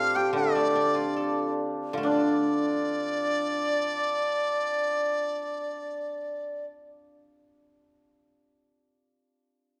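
Chinese traditional chamber music, tender and wistful, cut from a longer piece and moving in a rubato 2/4 at around 61-83 BPM in the D yu mode, where an airy, buzzing-membrane dizi with a crisp attack carries the melody up front while a shimmering hammered dulcimer weaves a second line and a silvery guzheng, played with fingerpicks, rings out in accompaniment, the music slowing down over the opening 2.0 seconds before the dizi and dulcimer drop out at 6.7 seconds, leaving the guzheng alone until 8.6 seconds, all set in a wet concert hall reverb.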